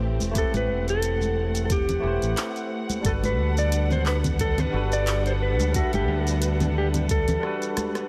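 Lightly reverberant and relaxed, this short sunset chillout clip sets a barky, lightly overdriven tine electric piano, carrying a filter sweep and tape echo, over lush, woody strings bowed with vibrato at a distance, a direct, up-front fingered electric bass, a deep layered electronic kick, a deep house kit of handclaps, hi-hat, rim click and shaker with soft-handed congas tucked behind, and a dark, clean electric guitar melody entering at 0.4 seconds, all moving from Am9 to Gmaj9 before a drum fill at 7.4 seconds.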